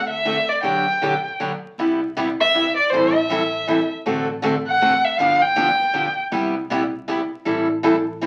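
Charming and lively, this snippet of acoustic string swing in waltz time sets a close, expressive bowed violin up front, singing with vibrato and portamento until it falls away at 6.2 s, over a bright, boxy picked parlour guitar that joins at 0.3 s and a woody pizzicato upright bass sitting in the background, all heard through a wet club reverb and the crackle of a very old 78 rpm record.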